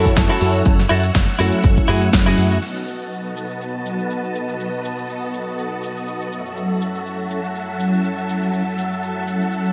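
A bright, 1980s-style digital production steeped in a lush hall reverb frames this cosmic, sleek nu-disco excerpt at 122 BPM, lightly swung on the sixteenths and moving from F#m7 to B7 and back to F#m7. Round, brassy synth brass with chorus, phaser and delay and a full, vintage string machine with ensemble chorus both pump against the sidechain throughout, while a clean, compressed electric guitar riff, a punchy envelope-filtered picked bass, and maracas with group handclaps play only until 2.6 s. A layered electronic kick drops out at 2.2 s, leaving the up-front house kit's snare, hi-hat, cabasa and crash cymbal, dressed in gated reverb, to carry on.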